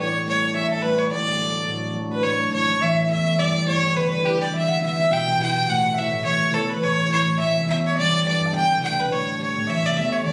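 Rollicking and lively, this swung Celtic reel at 210 BPM puts a clear, earthy bowed fiddle with light vibrato up front, touched by plate reverb, while a very quiet, pure-toned baroque flute with a crisp attack carries a second line, a ringing thumb-plucked concert harp supplies the accompaniment over chords moving through A7, D, G and Em, and a woody pizzicato upright bass joins in the background at 2.2 seconds, all captured on a phone in a small, wet-sounding room in this brief section cut from a longer piece.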